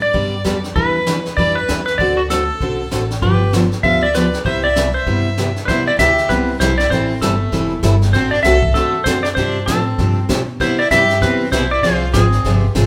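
A lively, wet studio reverb surrounds this band playing together in one room, giving the cut a roomy, live-off-the-floor glow. It's cheerful western swing country in C major, moving briskly at 195 BPM in 4/4 with a swung eighth-note feel. A twangy, clean lap steel guitar sits up front carrying the melody with its bright slide tone, while a clear fiddle with light vibrato and an airy, slightly boxy bow supplies an intense second line. An up-front, full-bodied dreadnought acoustic guitar picks the accompaniment, an upright bass plucks a woody, growly low end, and a jazz kit played with brushes adds a high-tuned snare, hi-hat and punchy kick. The passage moves from its opening section into a second one at 5.7 seconds, with jazzy harmony running through chords like Em7, D7 and Cmaj7 before landing on an unexpected Fm near the close of this cut from a longer piece.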